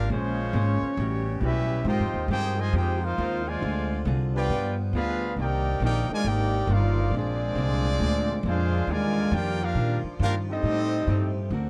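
A clear, close-miked trumpet section with light vibrato carries the melody over a mellow trombone second line, faint, loose sustained saxophone chords and a woody, thumpy pizzicato upright bass up front, while a dark, clean hollow-body electric guitar picks its accompaniment in the background of this energetic, joyful big band swing excerpt in Eb major at 137 BPM, moving through rich chords such as Bbm9, G7b9 and Ebmaj9 in a moderate club ambience with a dusky production.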